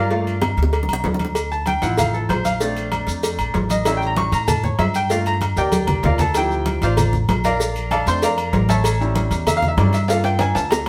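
Salsa at a fiery, passionate 192 BPM in D minor, this short cut from a longer piece opens with a bright grand piano taking a solo from the very start, its brilliant, polished tone and short sustain sitting up front over a cycling progression of Gm7, Dm7, Bbmaj7 and A7. Beneath it, an upright bass plucks a woody, growly line that stays dark and thumpy, placed just as prominently as the piano. Congas with a warm, thick, medium-tuned skin join almost at once alongside tight, high-tuned cowbell and bongos struck with hard hands, while ringing metal-shelled agogo bells and timbales enter at 0.3 seconds. Grainy, mellow maracas arrive at 1.4 seconds, sitting lower in the mix, and drum fills break through at 0.4, 5.7 and 10.1 seconds. The percussion is heard close and dry, yet the whole band plays live in one room with a wet studio reverb that gives the performance a lively, shared space.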